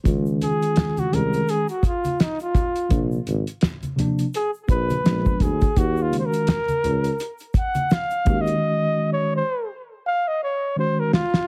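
A swung 84 BPM jazz-hop groove rides on a cloth-damped, thuddy drum kit with a fat snare and tight kick, up front, while an egg shaker and hard-hand congas sit bright and small-roomed in the background, and a drum fill arrives at 10.1 seconds. A vintage tuba with soft, scooped notes carries the bass until 8.5 seconds beneath a clean tine electric piano moving through Dbadd9, Bbadd9, Bb7b9 and Ebm7 chords. Over it all, a whispered, breathy flugelhorn solos with vibrato and a mellow, intimate tone, giving this short, lightly reverberant fragment a smoky, nocturnal mood through its heavily compressed, radio-like sound.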